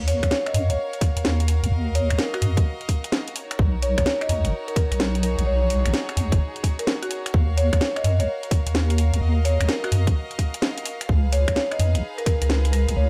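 Skippy and bouncy, this two-step UK garage excerpt rides a swung 4/4 groove over a small room ambience. A deep, dark wobble bass sits up front throughout, its detuned, saturated tone thickened with chorus. The up-front electronic drums pair a tight, layered kick with studio reverb and a produced kit of finger snaps, bright hats and a cracking snare sharing that reverb. A woody marimba played with medium mallets carries a smooth melody from 0.1 seconds, while a clear, close violin section holds earthy bowed chords with light vibrato, pumping under sidechain compression. The harmony moves from Ebm7 to Bmaj7, back to Ebm7 and then to Db9 at 11.1 seconds.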